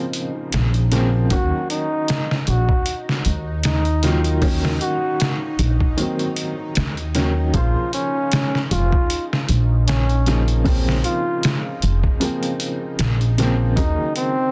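A boxy upright piano with tremolo and tape echo opens this dark, hypnotic trip hop excerpt in Bb minor at 77 BPM, joined almost at once by a gritty, pitched-down sampler-style kit with a thumpy kick, a very quiet detuned, string-like drone with phaser, and, from 0.5 seconds, an up-front pizzicato upright bass with woody gut strings. At 1.3 seconds a veiled bucket-muted trumpet takes the solo melody in jazz style, with scooped notes, light vibrato and tape echo, over a slow swing between Bbmadd9 and Ebm7. The small room and dense, heavily limited master keep the drums and bass close and up front.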